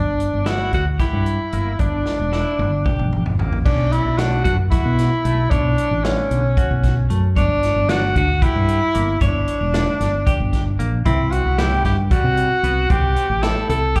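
Driving and intricate, this progressive instrumental band piece moves in an uneven 7/8 meter with a straight feel, heard live through a club PA with a touch of room reverb, and it is cut from a longer performance. A clear tenor saxophone carries the melody up front, its light vibrato and pop-style phrasing set in plate reverb and digital delay. A bright, twangy clean electric guitar picks compressed arpeggios underneath, colored by tremolo, plate reverb and slapback echo, while a woody fretless bass sits close and round with a dark, hollow-bodied tone. The swinging big-band drum kit sounds distant and roomy, with a punchy kick, medium-tuned snare, hi-hat, toms and crash cymbal, and a drum fill from 2.1 to 3.7 seconds leads into the second section over chords moving from Bmadd9 through Gm to C. At 11.1 seconds a very quiet vibraphone adds a metallic, ringing second line with fast motor vibrato.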